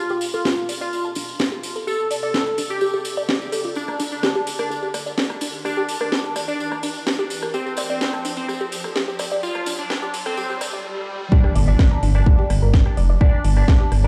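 Played back on a big sound system in a bare stone room, with light digital reverb and a high-pass filter, this excerpt of dark, driving melodic techno runs at 127 BPM in G minor. Over F, Gm and Csus2 chords, a juicy, warbling polysynth carries the melody with chorus, delay and sidechain pumping. A woody, wave-folded pluck spins arpeggios under a filter sweep, colored by analog chorus and tape echo. A riser climbs through the build, joined by cracking snare, metallic hi-hats and rim clicks from a tape-warmed house kit and a jingly, close tambourine that drops out at 10.8 seconds for a brief break. At 11.3 seconds the drop hits with an electronic impact and a punchy, up-front kick, and moments later a menacing detuned saw bass enters, swelling and pumping between F1 and G1. Meanwhile an eerie, inharmonic FM bell sits in the background on D5, treated with chorus, phaser and tape echo.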